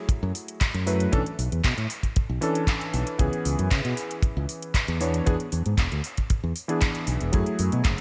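At 116 BPM in a straight 4/4, a tight, dry kick drives this cosmic, sensual nu-disco excerpt in F# minor, joined by a bright fingered electric bass pumping against the sidechain, a house kit of layered handclaps and metallic hi-hats bathed in gated reverb, and a clangy, chorused electric grand piano with short sustain, sidechain pumping and delay voicing F#m9, Bm11, C#m7 and E7, all framed by bright 1980s-style digital production and light studio reverb.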